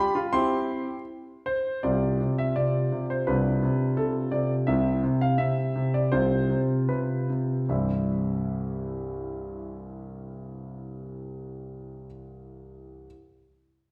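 Heard from further back in a recital hall with a wet, 1.4-second reverb, this short passage cut from a longer classical-period sonatina has an elegant, graceful air. A clear, natural concert grand plays solo in C major at 74-85 BPM in a straight 2/4, its deep bass and long sustain sitting up front across a range from C2 to C6. The harmony moves between C and F over a C bass, and the tempo slows from 4.0 to 7.7 seconds before the music settles back on C.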